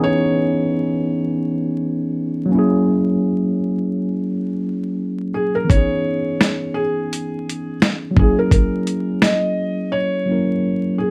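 Nostalgic and hazy, this lo-fi hip hop excerpt in C# dorian moves at 85 BPM with a swung 4/4 feel, as a mellow tine electric piano with a worn, slightly out-of-tune cassette-tape character plays C#m9 and F#7 chords beneath a soft, felt-muted upright piano melody bathed in plate reverb and carrying audible action noise, while a gritty, overdriven sampler-style drum kit with finger snaps, hi-hat, a thumpy kick and a medium-tuned snare appears only from 5.7 to 9.4 seconds, all over a bed of vinyl crackle.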